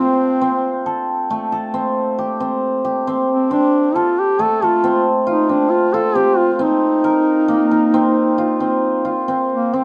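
Contemporary instrumental in C dorian at 135 BPM in 7/4, pensive yet urgent, where a mellow, close-miked duduk sings a folk-style solo melody with light vibrato over shimmering, hammered cimbalom arpeggios that ring up front throughout the nearly ten seconds, moving from Am7 to Cm7 at 6.6 seconds in a moderate studio reverb.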